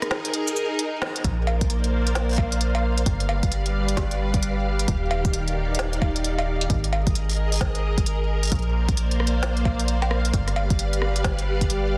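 A silky, vintage string machine holds soft sustained chords with ensemble chorus, pumping and shimmer reverb over an organic electronic kit of woody snare, smooth hats, cabasa, cowbell and rim click with delay, before a metallic, fast-attack FM bass and deep electronic kick enter at 1.2 seconds after a brief break, driving this wistful, glitchy IDM cut at 132 BPM with a 16th-note swing in Bb mixolydian, moving through chords like Bbadd9, G7 and Ebmaj7 in a dense, heavily limited modern mix.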